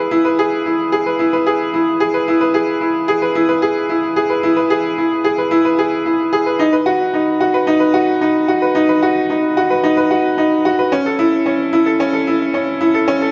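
A bright upright piano carries this short fragment on its own, its woody, slightly detuned tone sounding worn yet open and placed up front in the mix. This is a tender, luminous piece of electronica in a steady, straight 4/4. The piano stays within a narrow middle register, from C#4 to B4, for the full 13.3 seconds. The whole passage works as a build-up, hinting at something larger to come. A moderate echo chamber reverb with a 1.4-second decay gives the sound a soft halo of space around its otherwise intimate character.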